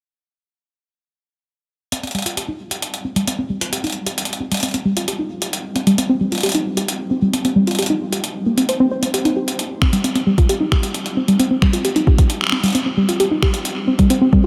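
IDM with an intricate, glitchy mood, this short section cut from a longer piece sits in a straight 4/4 and drifts through a dreamy mix soaked in a wet cathedral reverb. A soft, round pluck carries arpeggios from G3 to C5 between 1.9 and 14.5 seconds, its full-bodied, dark tone sitting up front and dressed in chorus, a diffuse ambient delay and shimmer reverb. Alongside it, a jungle sampler-style drum kit of finger snaps and hi-hat runs from 1.9 to 14.2 seconds, sounding compressed, pitched up and gritty, as if re-recorded in a large room, with its own diffuse ambient delay. At 9.8 seconds a soft electronic kick drum arrives up front, adding a produced low pulse beneath the haze until 14.4 seconds.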